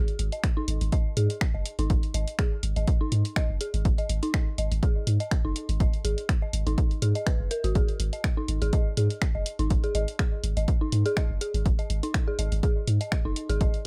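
Minimal techno with a quirky, cool mood, cut from a longer piece, where an up-front punchy electronic kick and a deep sine sub bass with a pitch-drop attack and sidechain pumping anchor analog drum-machine finger snaps and hi-hat on a lightly swung groove, while an eerie, inharmonic FM synth bell riff, detuned and mellow, decays through chorus, tape echo and the same pumping in a dry room.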